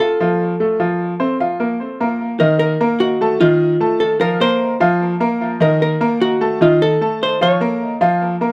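Nostalgic and sultry, this Latin excerpt moves at a straight 150 BPM in 4/4 and sits in Bb harmonic minor, with chords that pass through Ebm, F7 and Bbsus2 before settling on Bbm. A clean, electric hollow-body jazz guitar carries the melody up front until 8.0 seconds, while a bright, worn baby grand piano plays arpeggios through a tape echo and rings on to 8.5 seconds. The sound is dry and close, like a 1970s-style studio recording touched with light reverb.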